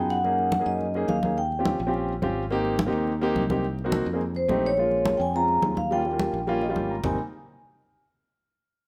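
Afro-Cuban jazz with a sunny, lively mood, where an up-front, ringing vibraphone carries the melody in two phrases, pausing between 1.9 and 4.4 seconds, over a dark, mellow grand piano that adds a fill near the end, a punchy fingered electric bass and bright, close-miked congas, all set in a moderate large-studio reverb.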